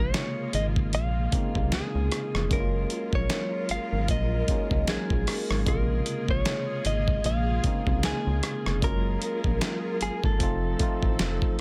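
A rubbery, hollow square bass sits up front beside a gritty, compressed sampler-style drum kit with a thumpy kick, rim clicks, snare and hi-hats, setting a sensual, moody contemporary R&B groove with a swung sixteenth-note feel in this slice of a longer piece. A clean, direct-recorded electric guitar with subtle chorus carries the melody over bell-like tine electric piano accompaniment. Lush, distant strings hold sustained harmonies with a sidechain pumping effect, all set in a digital ambience.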